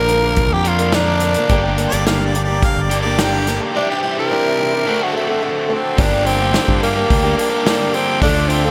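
A growling, raspy tenor saxophone leads this wistful, reflective folk rock and heartland rock excerpt, taking a close-miked solo up front until 6.0 seconds. Beneath it, a dark, woody twelve-string acoustic guitar picks a shimmering, octave-doubled accompaniment, while a double-tracked overdriven electric guitar plays a crunchy riff. A round, fingered electric bass and a natural country drum kit, recorded in a small room with a punchy kick and medium-tuned snare, hold a straight four-beat pulse. A clear harmonica with classical-style vibrato adds a brief second line from 1.9 to 3.6 seconds, and a very quiet symphonic string section sustains rich, biting bowed chords high above. The harmony moves from Bb through Gm, Cadd9 and D7 to Gm7, and light studio reverb sits over the mix.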